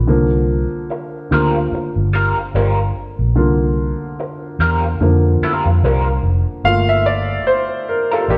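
A wet stone room gives this short cut from a longer piece the feel of a band playing live together, its reverb lingering around every note. It is soulful, introspective neo-soul R&B at 73 BPM in 4/4, with a lazy sixteenth-note swing. A woody, polished upright piano sits up front and carries a solo from the start, ranging from D3 to F5 over a C7sus4 chord before moving to Gm7 at 6.6 seconds. Beneath it, a vintage electric bass played with the fingers sounds dark, round and punchy, its foam-muted notes staying low between F1 and F2. At 0.9 seconds an electric guitar through a small old amp joins as a second line, slightly broken-up, compressed and lo-fi, with a wah coloring its fingered phrases between G3 and Bb4.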